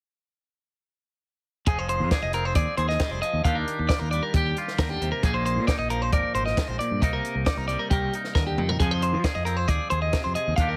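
A nearly reverb-free, heavily compressed radio sound frames this wistful, intricate math rock and midwest emo excerpt at 135 BPM, where an up-front clean electric guitar picks arpeggios over a bright, twangy second guitar with a warbly pitch drift, a growling overdriven fingered bass and a compact cocktail drum kit with a high-tuned snare and tight kick, moving through Fm7, Ebmaj9, Bb7sus4 and Cm7 before a drum fill at 8.4 seconds leads back to Fm7.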